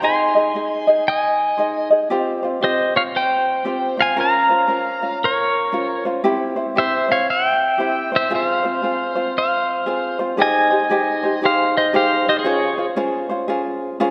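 A bright, twangy electric pedal steel guitar carries the melody from the opening, played clean and compressed with fingerpicks, slide and volume swells, over a light, fingerpicked acoustic ukulele, both up front in this languid, dreamy Hawaiian piece at 116 BPM with a swung 4/4 feel. The music drifts through a wet concert hall reverb in F minor before moving into Ab major at 10.4 s. The steel falls silent at 12.9 s, leaving the ukulele to finish alone until the fragment is cut at 14.1 s.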